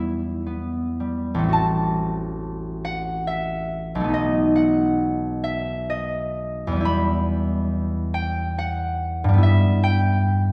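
Classical solo concert harp in a wistful, gentle E minor, drifting in a slow, rubato 6/8 at 36-48 BPM (dotted quarters), its ringing, fingerpicked acoustic tone sitting up front yet bathed in a wet recital-hall reverb heard from further back in the room, as the passage, cut from a longer piece, moves through a diminished chord and B7 before settling back on E minor.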